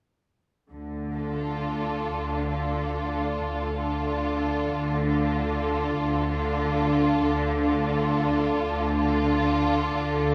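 A slow, rubato pulse in 12/8, moving at roughly 41-49 beats per minute in dotted quarters, carries this solemn, elegiac movement for string orchestra in D minor, cut from a longer piece and resting on a D minor chord. The double basses and cellos enter together at 0.7 seconds. The basses sit up front with a lush, expressive tone, soft attacks and portamento, while the cellos sound smooth, even and more distant, with only light vibrato. At 1.2 seconds the upper strings join: a violin section carries the melody with a smooth top, set back in the background, while a second violin section adds a distant, expressive line. Beneath them, the violas supply a dark, woody accompaniment with gentle attacks. A moderate scoring-stage reverb with a 2.0-second decay gives the ensemble a spacious, mournful glow through to 10.3 seconds.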